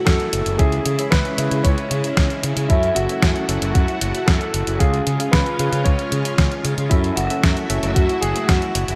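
A dark, mellow baby grand piano carries the melody of this nostalgic, melodramatic italo disco excerpt, its long sustain dressed in lush chorus and delay. Beneath it, a vintage string machine holds sustained sawtooth chords with a sub octave and slow attack, thickened by ensemble chorus, while a fuzz-drenched fingered electric bass sits punchy and overdriven under the harmony. The groove runs at 114 BPM in a straight 4/4, driven by a thumpy, tape-tinged electronic kick that is the loudest part of the mix, alongside a detuned 8-bit drum machine supplying hi-hat and an up-front, medium-tuned snare re-recorded in a large room. From 0.6 seconds a clean tine electric piano adds stabs through a combo amp, shaped by analog chorus and a low-pass filter, until it drops out at 8.0 seconds. The harmony in F# minor moves between F#m7, C#m and C# under a moderate plate reverb, giving the piece a bright 1980s-style digital sheen.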